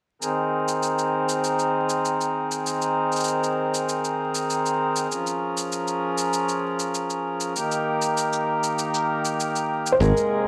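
Crackling vinyl and a roomy echo-chamber reverb frame this hopeful, playful folktronica piece at 98 BPM in Ab major. A reedy, breathing hand-pumped harmonium holds filtered chords from Abadd9 to Bbm7 and Eb over smooth, overdriven electronic shaker and hi-hat. Then, near 10.0 s, a soft felt-muted upright piano melody with audible action noise, shimmering octave-doubled twelve-string guitar arpeggios, a brief bright, growly fingered electric bass note and a very quiet, tight kick drum arrive just as the passage is cut off.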